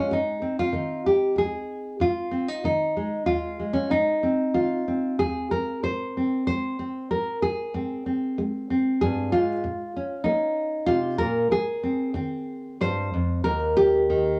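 A lone nylon-string guitar opens this short fingerpicked folk excerpt, its dark, full-bodied classical tone sitting up front in a small room with light reverb. The mood is pastoral and gentle, moving in an unhurried three-beat metre with a straight feel. The guitar spans from low bass notes up into its upper register, and faint finger squeaks on the strings add an intimate, human touch. The harmony rests on an Ab6 chord before shifting to Ab, then to Bbmadd9 at 9.6 seconds, and settling back on Ab. A worn, warbling cassette-tape quality gives the sound a gentle pitch drift and an aged cast. The fragment is cut from a longer piece, and the chords fall away at 13.5 seconds before the recording stops at 14.4 seconds.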